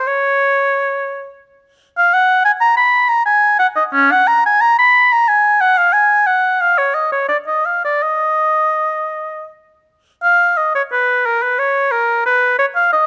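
A lone oboe opens the recording, playing a grave, solemn line in the manner of a baroque fantasia. Its tone is warm and classical, touched with a light vibrato, and it sits up front in a close, detailed recording with a light reverb. The phrasing moves in a flexible, rubato triple metre, giving the music the feel of a thoughtful improvisation. Around 10.2 seconds the music moves into a new section, which carries on until the fragment is cut off at 13.1 seconds, as it is taken from a longer piece.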